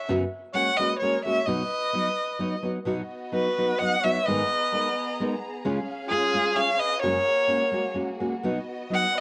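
Heard through the light reverb of a home cassette recording, this proud, festive mariachi fragment in B major moves in a rubato 3/4 at 130 BPM, with a clear, focused solo violin bowing the melody up front over bright, fingerpicked nylon-string guitar, while a mellow trumpet with light vibrato carries a second line in the background and a rich, close chamber violin section enters at 2.9 seconds with sustained bowed chords as the harmony passes from F#sus4 through B, G#madd9 and C# before settling on B.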